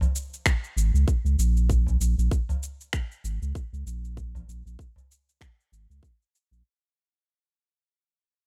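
Overdriven electronic cabasa and finger snaps open alongside a deep, band-limited udu in this warm, mystical organic downtempo fragment at 97 BPM in Bb minor pentatonic with a swung 16th-note feel, joined at 0.5 seconds by a tight, up-front electronic kick and at 0.8 seconds by a round, sine-toned sub bass, the whole dry, rough home-demo mix fading out across its 6.6 seconds.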